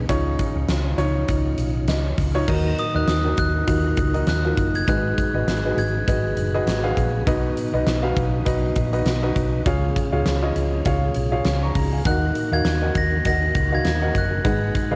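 An up-front, woody upright piano with audible action noise anchors this driving, bittersweet pop excerpt, adding a fill at 1.6 seconds over a round, dark hollow-body electric bass, a very quiet tonewheel organ holding sustained chords through a fast rotary speaker, and a huge arena drum kit with a punchy kick, fat snare and bright cymbals, while a bell-like glockenspiel struck with hard plastic mallets carries the melody from 2.8 to 6.3 seconds and again from 12.1 seconds, the piano, drums and glockenspiel tinted by cassette tape in a home recording with light reverb.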